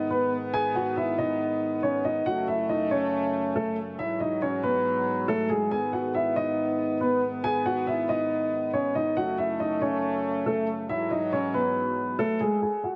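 A lush hall reverb with a 2.9-second tail wraps this shadowy, warm-toned production, a tense and ominous hip hop fragment cut from a longer piece, moving at 139 BPM in a half-time 4/4 feel in G# phrygian. Up front, a mellow baby grand piano carries the melody with long sustain through a low-pass filter from 0.0 to 13.0 seconds, while a distant, roomy brass section holds tight sustained chords with light vibrato in a classical style. The harmony cycles twice through G#m, F#m and Eadd9.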